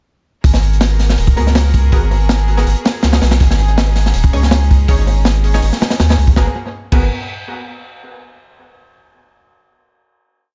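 This dark, raw drum and bass track in a jungle vein opens at 0.4 s straight into its drop, with a heavily chopped acoustic breakbeat, a saturated sub bass and a chamber string section arriving together. The drums sit up front, gritty and mid-forward, with a tight kick, a medium-tuned snare, dusky cymbals and hi-hat, a rolled-off top and a touch of analog delay. Beneath them the thick, sine-based sub bass carries a deep, dub-style line coloured by tube saturation, while the bowed strings hold an earthy, distant sustained pad with light vibrato in the background, moving from G#m9 to C#sus2. From 1.4 s a bold, punchy synth stab in the manner of an orchestra hit adds sparse, echoing, closely voiced chords, its bright, detuned sawtooth layers and noise wrapped in built-in reverb and analog delay. At 6.4 s the piece arrives on a final G#m9 chord, and the whole mix is bathed in studio reverb, echo-heavy and dull at the top end.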